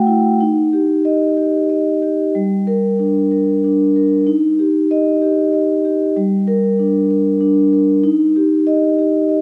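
A vibraphone played with soft mallets carries this brief contemporary classical piece alone, its motor switched off so each note rings metallic and mellow. The instrument sits up front and mid-forward in the sound, moving between G3 and G5 in a flowing, rubato three-beat metre. Its harmony rocks gently between Eb and G minor chords, starting at 0.4 seconds and settling back on Eb at 8.0 seconds. A wet recital-hall reverb with a 1.6-second decay surrounds the ringing tones, and the dark, warm production gives the fragment a soft, flowing warmth.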